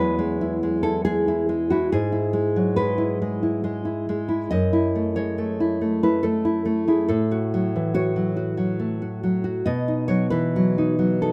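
Tender and warm, this short cut from a longer romantic solo classical guitar piece drifts in a rubato 3/4 as a fingerpicked nylon-string guitar, dark and full-bodied and placed up front in a rough home demo mix with light studio reverb, moves from E through F#m7 to a closing B over its 11.3 seconds.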